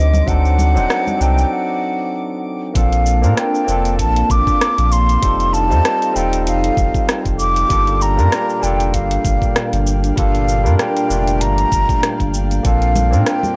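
A hollow, vibrato-tinged concert flute carries the melody through analog delay over a barky tine electric piano under a filter sweep, a breathy chorused pad, a round, up-front sub bass and a faint glassy texture that drops out at 1.5 s, while a knocking electronic kick, a metallic-hatted R&B kit with cabasa and rim click, and bright, close congas and bongos join almost at once in this relaxed, smooth sunset chillout excerpt, which has a gritty cassette-tape sound with little reverb.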